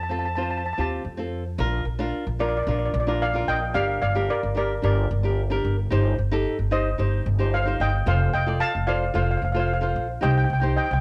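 A bright, shimmering steel pan leads this carefree calypso excerpt, its metallic lead line struck with hard rubber sticks and sitting mid-forward and up front between Bb4 and A5. Beneath it, a woody pizzicato upright bass with steel strings holds the low end from F1 to F2, also up front and slightly louder than the pan. A fingerpicked acoustic flamenco guitar with a dark tone supplies accompaniment from 0.1 s, the quietest of the three parts. The pan and guitar both carry a cassette tape colour and plate reverb, and the whole piece has the light reverb of a home cassette recording. At a bouncy, straight 111 BPM in 4/4 and in Bb major, tuned to A4 = 441 Hz, the music opens on F7 and settles into a new section at 1.6 s, moving through Bb, Gm, Cm/G, F and Cm before it is cut off at 11.0 s.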